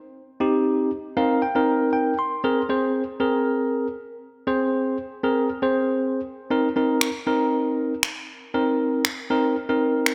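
A lush, wet hall reverb with a digital ambience surrounds this short dance-pop excerpt, cut from a longer piece. It has a driving, energetic mood at 118 BPM in a straight 4/4, set in C minor and tuned to A4 = 442 Hz. A clean tine electric piano, heard up front as if through built-in speakers, carries the accompaniment from 0.4 seconds between C4 and C6, with a short fill from 0.9 seconds. The harmony moves from Cm7 to Abadd9/C and back to Cm7. Electronic finger snaps, re-recorded in a small room and placed up front, join the piano at 7.0 seconds and play through to the end.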